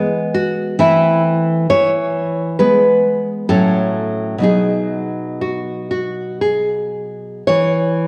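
Heard through worn, warbling cassette tape with a warbly pitch drift and a wet scoring-stage reverb, this short excerpt of a romantic duo for two fingerpicked nylon-string guitars has a warm, serene mood in a slow, rubato 3/4 at 54-67 BPM. Both guitars sit up front for the full 8.1 seconds: one carries the melody in a narrow upper range while the other supplies the accompaniment from the low register, one full-bodied and deep, the other bright. The harmony moves from E through Am/E and back to E, then on to F#m/A and B before the chords drop out at 7.5 seconds.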